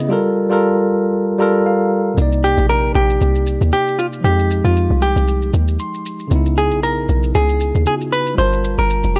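A dry, gritty hardware recording with transformer saturation and a top end that stops at 10.3 kHz frames this soulful, late-night amapiano excerpt in C minor at 116 BPM with swung 16ths, where a clean tine electric piano heard through its built-in speakers opens the piece and returns with fills, a deep, round FM log drum bass with a noise layer and fast-attack, decaying hits arrives up front with a layered electronic shaker at 2.2 seconds, and a dark, fingered hollow-body jazz guitar carries the melody through analog delay from 2.4 seconds over Gm9, Cm9, Fm9 and Dbm9 chords.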